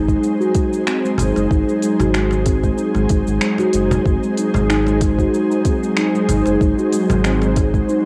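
Earthy and warm, this short organic downtempo cut from a longer piece sets an ethereal, detuned pad with chorus, 12-bit sampler grit and sidechain pumping over a G#7 chord, while a ringing steel tongue drum played with soft rubber mallets spins mellow arpeggios through tape echo, a round, dark analog bass holds the low end, a soft electronic kick and a crisp kit of cabasa, finger snaps and hi-hat carry a gently swung groove, and a woody cajon joins in the background at 1.2 s, all with the light reverb and character of a home cassette recording.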